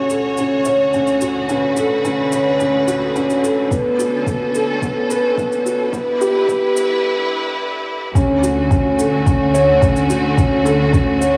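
A felt-muted upright piano, mellow and intimate with audible action noise and a digital delay, plays a riff over lush sustained chords from a rich symphonic string section with sidechain pumping and a faint overdriven shaker, opening this tender, luminous piano and strings electronica excerpt at 108 BPM in D major, where a soft overdriven electronic kick enters at 3.7 seconds, the harmony moves from Dmaj7 to G6 through a build-up and brief break, and a dark, bowed chamber double bass section joins on D2 for the drop at 8.2 seconds, all set in a reverberant concert hall.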